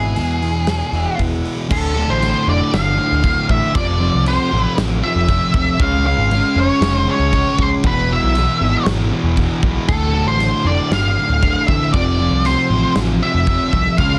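Angsty and brooding, this quiet-loud alternative rock excerpt in D dorian moves at 117 BPM in a straight 4/4, led by a dark, up-front octave-fuzz guitar melody over a thick fuzz riff guitar, a round, punchy overdriven bass and a big-room acoustic drum kit with a punchy kick and rolled-off top. A bright, twangy arpeggiated guitar through a small old amp, bathed in lush chorus and analog delay, sounds only until 1.5 seconds, and a raw overdriven garage guitar joins the riff at 1.7 seconds as the chords cycle through Dm, F, C# and E. The mix carries light reverb and a dense, heavily limited modern master.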